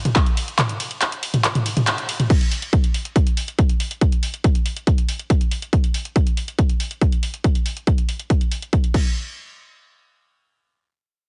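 Techno at 140 BPM in a straight 4/4, this excerpt cut from a longer piece feels intense and industrial. A punchy analog drum machine comes in at 0.1 seconds with crash cymbal, handclaps, hi-hat, ride cymbal and toms, its tape-warm tone sounding re-recorded in a small room, with sidechain pumping on the hats, cymbals and toms. An overdriven, layered electronic kick sits heavy and up front from 0.2 seconds, then drops out between 0.6 and 2.3 seconds during an opening drop, with a band accent landing at 1.9 seconds. Both drum parts stay forward in the mix through to the close of the playing at 9.0 seconds. A light reverb surrounds the sound, which is heavily compressed into a radio-like band with the top end trimmed away.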